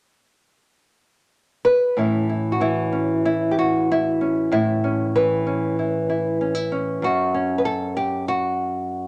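Lightly reverberant and intimate, this short folk excerpt opens on a moment of silence before a small, warm, up-front nylon-string guitar enters at 1.6 seconds, fingerpicked with audible finger squeak as it settles on an Aadd9 chord and then moves to F#m at 7.0 seconds, carrying a nostalgic, pastoral mood in a straight, unhurried 4/4.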